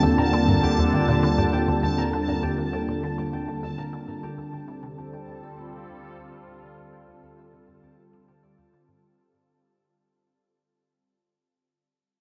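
From the first moment, a bright, chorused sawtooth pad with a slow filter swell sits up front over a squelchy ring-modulated blip riff, a round analog bass, a bubbling stepped-filter texture and a fingerpicked concert harp, all fading out together in this hypnotic, mysterious ambient space music at 100 BPM, moving from Eb to Dm7 at 4.2 seconds, steeped in a huge dark reverb, with the harp ringing on alone until 10.9 seconds.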